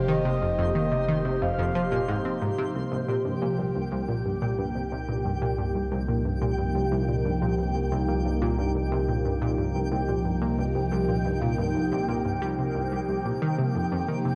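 Expansive and mysterious, this cut from a longer piece of ambient, sequencer-driven space music moves at 90 BPM in a straight 4/4, its chords shifting from F7(no3) to Cm7 at 2.8 seconds and back to F7(no3) at 13.4 seconds. Up front, a swirling phased analog pad holds detuned sawtooth chords through phaser and chorus, above a deep, round, wave-folded bass and a twinkling granular texture with an octave-up shimmer in its own reverb. A detuned sawtooth-and-square analog pluck with a filter sweep carries the riff through chorus and analog delay, while a breathy, flute-like synth lead with vibrato sings only briefly before stopping at 2.4 seconds, all heard through a wet spring reverb and the soft grain of a home cassette recording.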